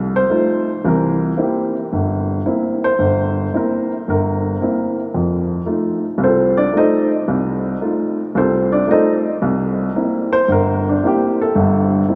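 Bathed in a vast, echoing cathedral reverb, this brief solo jazz excerpt features a dark, woody upright piano with short sustain sitting up front, swinging at 112 BPM in 4/4 through a sophisticated C mixolydian passage that moves between F7 and C7, spanning a low G1 to Eb5.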